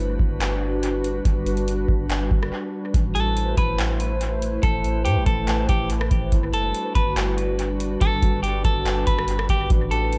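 Spacious and melancholic, this atmospheric cloud-rap excerpt moves at 142 BPM in a half-time feel, with a glassy FM pad holding sustained chords through ensemble chorus, built-in reverb and sidechain pumping over a soft, round 808-style bass as the harmony moves from Gmaj7 to Amadd9 and back. A booming analog drum machine, up front, with a deep kick, metallic hats, handclaps and rim clicks, runs through analog delay from 0.2 seconds, and a brief break arrives at 2.5 seconds. At 3.1 seconds a clean, dark electric guitar enters with a picked melody colored by warbly pitch drift and analog delay, all set in an echo-heavy digital ambience.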